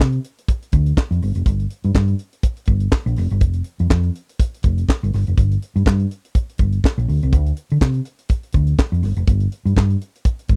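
A tight, up-front funk drum kit with a high-tuned snare, tight kick, hi-hat and handclaps drives this sultry disco groove at 123 BPM with a light sixteenth-note swing. A dark, round hollow-body electric bass plays alongside it from F1 to D3, all captured in a dry, close 1970s-style studio sound and cut from a longer piece.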